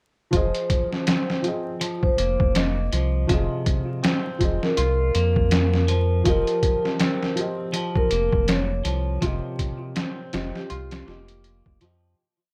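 Vinyl crackle sits under a dark, melancholic trip hop groove in F minor at 81 BPM. A compressed, pitched-down sampler drum break with a thumpy kick and overdriven grit, along with a deep, round analog dub bass line, starts at 0.3 seconds and sits up front. A soft-mallet vibraphone rings a mellow repeating riff over felt-muted upright piano chords with audible action noise and sampler grit, while a clean, twangy electric guitar picks a filtered 16-step arpeggio, all three trailing tape echo, as the harmony moves from Fm7 to Ebadd9/F before the piece fades out from 8.2 seconds.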